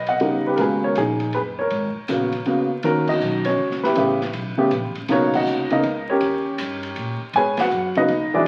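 A woody, up-front upright piano carries the melody in this late-night, swinging jazz piano trio passage in G# minor, moving at 160 BPM in 3/4 with a swung eighth-note feel over chords such as D#7alt, G#m11, A9 and Bmaj9. A pizzicato upright bass with steel strings sits beneath it, and an airy acoustic drum kit with dark cymbals, a medium-tuned snare and a boomy kick fills in quietly behind. The band hits accents at 3.0, 5.3 and 7.5 seconds, all heard through a large studio reverb and the crackle of a very old 78 rpm record, in a short section cut from a longer piece.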